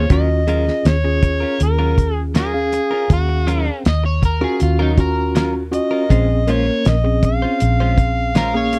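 Over a straight-eighth 4/4 groove at 80 BPM, this soulful, smoky soul blues excerpt moves from Ebm9 to Bbm9 at 6.1 seconds, with a cloth-damped drum kit of fat snare, tight kick and hi-hat sitting dark and up front beside a round, foam-muted fingered electric bass. A gritty, overdriven harmonica leads the melody with light vibrato and tongue slaps in a jazz-inflected solo, while a mellow tine electric piano comps underneath and a direct-recorded clean guitar adds compressed, picked stabs bathed in spring reverb. At 3.9 seconds a second, slightly broken-up electric guitar joins with a picked line through analog chorus, all captured in a dry, close 1970s-style studio sound with light reverb.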